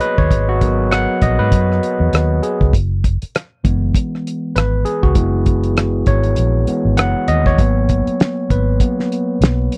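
A 16th-note swing drives this silky, smooth stretch of lush 1970s-style soul, cut from a longer piece. Up front, a gritty, barky tine electric piano, overdriven through a combo amp, takes a solo over a thuddy, cloth-damped kit with a fat snare, tight kick, rim clicks and a rolled-off top. Beneath them, a round, punchy foam-muted fingered bass enters at 0.2 seconds, and the dry, close studio sound carries a G#m7 to F#7sus4 change that returns to G#m7 at 7.6 seconds.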